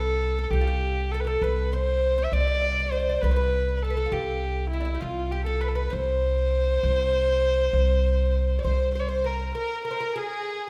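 This short cut from a longer Persian modal ensemble piece is heard through light reverb, with a hypnotic, longing mood in a straight 6/8 metre. A single bowed kamancheh sits up front and carries the melody with a soft attack, light vibrato and gliding portamento, its tone intimate and close. Beneath it, a bright, fretless oud plucked with a plectrum adds a woody second line on double strings. A pizzicato upright bass with steel strings, also up front, supplies a thumpy acoustic low end. At 8.6 seconds a rich, focused studio violin section joins with vibrato on a second line. The bass stops at 9.5 seconds as the music moves into a new section that runs to 10.7 seconds.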